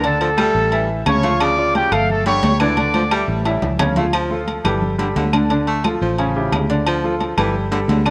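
A home cassette recording with light small-room reverb carries this fiery, danceable salsa excerpt, where a bright, tight trumpet section leads up front until 3.3 s over a clear, present grand piano, a smooth-topped baritone saxophone second line with vibrato, a dark, round fingered electric bass, ringing agogo bells and timbales, high-tuned thick-skinned congas and woody claves in the background, with a drum fill from 2.8 s to 4.1 s.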